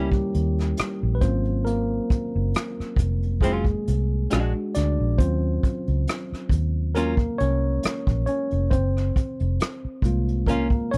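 R&B and neo-soul at a soulful, introspective 68 BPM with a light sixteenth-note swing in Eb dorian, this short fragment centres on a worn, slightly out-of-tune tine electric piano soloing through a combo amp, joined by a clean, picked hollow-body archtop guitar as a second line, a round, punchy foam-muted fingered bass, and a small-room brush kit with a tight kick, hi-hat and rim click and a rolled-off top, all close and dry as the chords move from Eb7b9 through Ebm9 to Gbmaj7 at 8.7 seconds.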